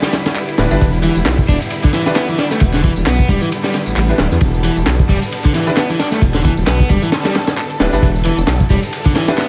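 Funky and playful, this swung breakbeat fragment pairs a gritty, punchy acoustic break kit with a layered electronic garage kit of bright hats, handclaps and tambourine, while a rumbling detuned saw bass with tube saturation sits up front, an overdriven electric guitar riff and clear grand piano stabs both trail dub echo, and a rich bowed string section holds sustained Em7 chords in the background with sidechain pumping, all in a dry mix coated in vinyl crackle.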